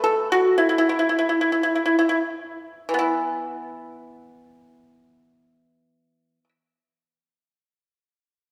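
A bright, percussive solo pipa, played with fingerpicks and sitting up front, opens this elegant, pastoral fragment of Chinese traditional music in a free, rubato 4/4 around 46-58 BPM, slowing through its first 3.0 seconds before moving into a new passage and falling silent at 6.5 seconds, its notes ringing out into a spacious concert hall reverb.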